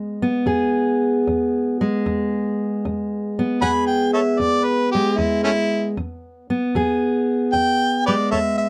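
A warm harmonica carries the melody in this short acoustic country blues fragment, entering at 3.6 seconds with a smooth top end, light vibrato, scooped notes and tongue slaps that lend its solo a jazz-inflected, swaggering edge. Beneath it, a fingerpicked steel-string acoustic guitar plays accompaniment from the start, its auditorium-body tone warm, with the occasional finger squeak audible. Both instruments sit up front, captured by close, detailed microphones and set in light reverb. The groove is laid-back, moving at 76 BPM in 4/4 with a swung eighth-note feel, resting on an E chord in E major, tuned slightly flat to A4 = 439 Hz. Lasting 8.7 seconds, the clip is cut from a longer piece.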